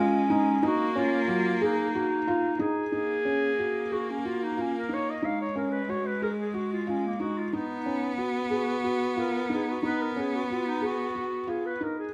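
Restless and pensive, this fragment of contemporary chamber music moves in an uneven 7/8 metre, with a felt-muted upright piano laying down dark, intimate arpeggios beneath a clarinet melody that sounds warm and a little distant in classical style. Close by, a single bowed cello carries the second line with a biting, intense tone, light vibrato and an airy bow. All three parts play together from the start until about 12 seconds in, with light reverb giving the small ensemble a roomy air.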